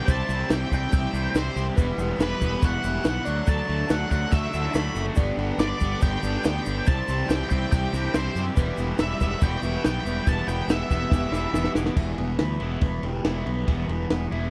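An octave-fuzz lead guitar carries the melody in this restless, bittersweet indie rock passage, its dark, distorted tone trailed by tape echo. Beneath it, a bell-like tine electric piano adds a clean second line in the background, while a shimmering vintage string machine holds very quiet sustained violin chords with a soft attack and ensemble chorus. Two crunchy overdriven guitars play picked riffs, one treated with phaser and the other set further back with lush chorus and tape echo. A fuzzy, round, punchy fingered bass sits up front over a compact cocktail drum kit with dark cymbals, a high-tuned snare and a tight kick, joined by a grainy tube shaker in the background. The straight 4/4 groove moves through chords such as Cadd9, Emadd9, Dadd9 and G, and a drum fill at 11.1 seconds leads into a new section at 12.0 seconds, where the lead, electric piano, strings and shaker have dropped out, leaving the riffing guitars, bass and drums in a dry, close 1970s-style room sound.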